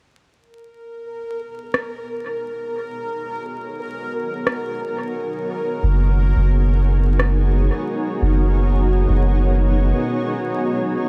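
Deep and spacious, this ambient dub fragment in G# minor moves at 88 BPM with a lightly swung 4/4 feel, built over a G#m7 chord that shifts to F#69 at 5.8 seconds. A cloudy, evolving granular pad of blurred, full-bodied detuned sines fades in, sitting above a bubbling sawtooth texture whose resonant filter steps at random through chorus. An up-front electronic rim click carries a dub echo, and a soft, round sub bass enters with the chord change at 5.8 seconds before a break at 9.9 seconds, all in a dark production dusted with vinyl crackle.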